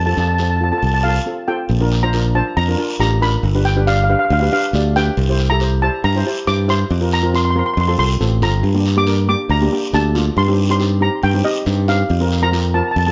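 A straight 4/4 calypso groove bounces along in a carefree mood through this passage cut from a longer piece. The lead steel pan carries the melody with a shimmering, boxy tone from medium rubber sticks. Beneath it, a double seconds pan fills in the harmony, darker and smoother in colour. A fingered electric bass sits up front with a growly, direct sound, and a raspy guiro adds texture from just after the start. After a short break at 1.3 seconds, the music moves into a longer passage that travels from Bb through G7 and C7 to Gmadd9 and Cm/G before arriving on Fsus4, all in a moderately roomy studio sound with a mellow top end.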